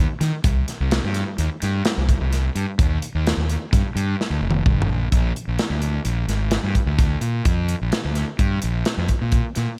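A fuzzed, overdriven electric bass opens this excerpt of intricate, bright math rock with a midwest emo lean, played with the fingers and set up front, reaching from low F1 up to Eb3. A modern studio drum kit joins at 0.2 seconds with hi-hat, kick, snare and toms, recorded acoustically in a studio room with a mid-forward character, a medium-tuned snare and a punchy kick, also placed up front. The two parts move in a straight-feel 5/4 metre, giving the short passage its off-kilter, angular shape. A drum fill at 4.2 seconds carries the music into a new section at 5.1 seconds, where bass and drums continue together to the end of the cut. A light reverb lends the close, gritty sound a touch of space.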